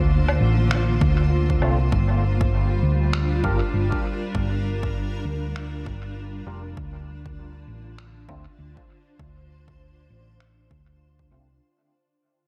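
Hazy and meditative, this ambient dub fragment, cut from a longer piece, moves at 99 BPM in 4/4 with a 60% swing on the sixteenths, shifting from Dm7 to Gm7 at 1.9 seconds and back to Dm7 at 6.8 seconds. A granular cloud pad holds sustained chords throughout, its slow attack and long release giving a blurred, evolving haze with a bright edge and its own built-in reverb. Up front sits a dark, round hollow-body short-scale electric bass, played with the fingers through an amp and staying low in the register. Muffled, pitched-down woodblock and finger snaps with a tape-like softness come in at 0.3 seconds, thrown into dub echo, and a punchy, overdriven electronic kick follows at 1.0 seconds. Barky tine electric piano stabs arrive at 1.6 seconds, bright and clean but passed through ensemble chorus, a low-pass filter that sweeps across the whole passage, and more dub echo. The mix is dry in terms of room sound yet heavy with echo, and the entire fragment is fading out as it plays.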